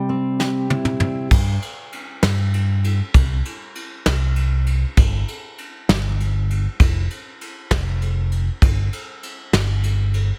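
A small room frames this hopeful, anthemic indie folk excerpt in a straight 6/8, where an up-front fingerpicked dreadnought acoustic guitar opens on a C chord during a brief break, a soft brush drum kit with a punchy kick and medium-tuned snare enters at 0.4 seconds with a fill, and a warm, amped picked electric bass joins at 1.3 seconds as the guitar stops and the building arrangement carries on with drums and bass alone.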